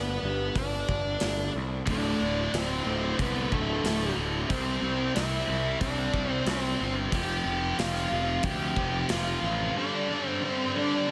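A dark octave-fuzz lead guitar carries the melody up front with slapback echo in this angsty, brooding quiet-loud alternative rock fragment, joined by a growly overdriven fuzz bass, a twangy, slightly broken-up guitar playing arpeggios through a small old amp with lush chorus and analog delay in the background, a big acoustic rock kit with a punchy kick entering at 0.6 seconds, and a scooped, bright high-gain riff guitar arriving at 1.9 seconds, set in a wet hall reverb that gives a big arena sound.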